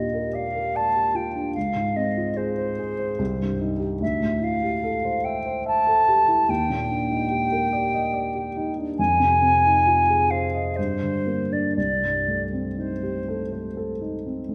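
A concert flute carries the melody with a pure, straight tone and a crisp attack, sitting up front from the start until it stops at 13.7 seconds. This short excerpt from a longer piece is a classical, impressionist duo in C dorian, mysterious and wistful, moving in a rubato 3/4 at roughly 58-75 BPM. Beneath the flute, a baby grand piano supplies the accompaniment, its dark, mellow voice close and intimate, with the natural sound of its action audible; it plays on alone until 14.5 seconds. The harmony drifts through lush chords such as Ebmaj9, Dbmaj7, Dm11 and Fm7 before settling on Cm6. A generous scoring stage reverb surrounds the duo, lending the intimate playing a spacious glow.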